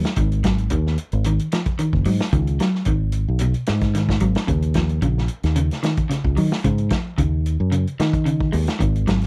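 Hypnotic and driving, this short afrobeat excerpt in Eb minor moves at 111 BPM in a straight 4/4, shifting from Ab7(no3) to Eb7(no3) at 4.5 seconds. A round, dark fingered electric bass sits up front beside a vintage acoustic drum kit with a punchy kick, medium-tuned snare, hi-hat and a rolled-off top, while a slightly broken-up electric guitar picks dark arpeggios. The sound is a dry, close 1970s-style studio recording with light reverb.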